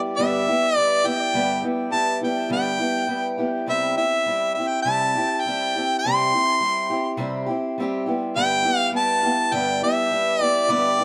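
A straight 4/4 pulse at 102 BPM drives this short rock passage in C major, cut from a longer piece and carrying a jangly, open-road mood. A picked old ladder-braced acoustic guitar provides the accompaniment from the first second, its boxy, up-front tone marked by audible finger squeak. The harmonic motion is simple, moving from G6 to C at 3.7 seconds and returning to G6 at 8.1 seconds. At 0.2 seconds a harmonica takes the solo melody in a pop style, sitting higher in the register with a punchy, present sound and a light vibrato. Dub echo trails the harmonica's phrases, and a moderate spring reverb adds to the echo-heavy character of the mix.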